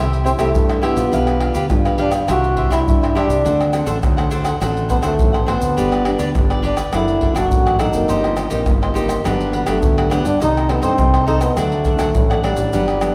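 Over a playful, sunny samba and choro groove at 103 BPM, crisp, bright picked cavaquinho, a fingerpicked nylon-string guitar with audible finger squeak in the background, and a round, fuzz-overdriven fingered electric bass open the excerpt, with up-front egg shaker, pandeiro, tamborim and deep surdo entering a split second later. Moments after, a breathy, vintage trombone comes in to carry a jazz-style solo melody with light vibrato, all set in the lush reverb of a recital hall.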